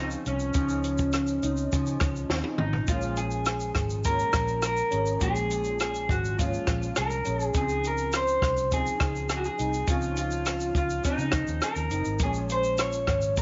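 A lo-fi electric guitar through a small old amp carries the slightly broken-up, picked melody up front, bathed in lush chorus and slapback echo, over a small, fingerpicked nylon-string guitar with ensemble chorus and warbly pitch drift, a dark, round, foam-muted vintage electric bass and a dry, compact cocktail drum kit with a punchy kick and high-tuned snare, in this hazy, sunny indie and bedroom pop excerpt at 103 BPM in straight 4/4 that moves between Dbmaj9 and Bbm7, with a drum fill at 2.3 seconds leading into the longer second section, set in a small room with light reverb and a muted top end.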